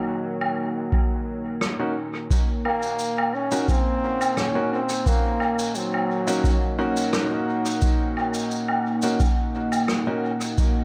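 Ambient dub at 87 BPM in Eb dorian, meditative and spacious, cut from a longer piece and built over a deep, dark pad whose slow-attack chords, thickened by chorus, move from Ebm to Ebm7 at 2.3 seconds. A clear trombone with vibrato carries a solo melody through dub echo until 7.5 seconds, while distant, roomy woodblock, rim click and shaker, also echoed, sit beneath an analog electronic kick placed up front. A woody, slightly detuned upright piano adds echoing stabs with long sustain, and a brief band accent lands around 1.6 seconds in an echo-heavy mix with light studio reverb.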